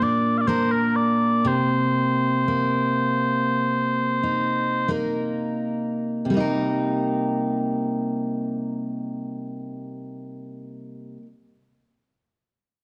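Mellow small bagpipes carry a sweet, continuous solo melody up front in this haunting Celtic slow air in C minor, tuned to A4 = 439 Hz, and they drop out at 4.9 s while the music slows through its opening 6.3 s. A bright, full-bodied picked steel-string acoustic guitar, with audible finger squeak, accompanies up front from the start over Bb and Cm7 chords, then carries on alone until 11.3 s in a rubato 4/4 around 42-65 BPM. Dark production and a moderate recital hall reverb frame this longing fragment of a longer piece.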